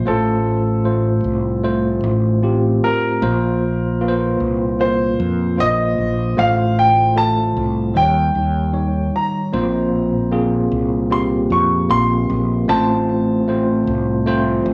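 A clear, polished baby grand piano carries the melody up front, touched by cassette tape, plate reverb and tape echo, over a tine electric piano heard through its built-in speakers and a round, punchy fretless bass in this emotional, melancholic pop ballad at 76 BPM, a home cassette recording cut from a longer piece whose chords drift from F/A through Bbsus2 and Eb7.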